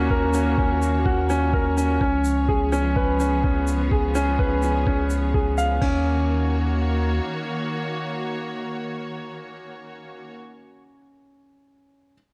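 A bright, woody upright piano riff with digital delay opens this melancholic, intimate piano-and-strings electronica excerpt, sitting up front over clear, bowed symphonic strings holding sustained chords and a deep, round sine sub bass, both pumping with sidechain as the harmony moves from Ebm7 to Db7 and back. A muffled, pitched-down, sampler-style kick thumps beneath a distant, roomy shaker and dark, brushed crash cymbal, all set in light studio reverb. The drums stop at 5.9 s, the sub bass drops out at 7.2 s, and the piano rings on by itself once the strings end at 10.4 s, until 12.1 s.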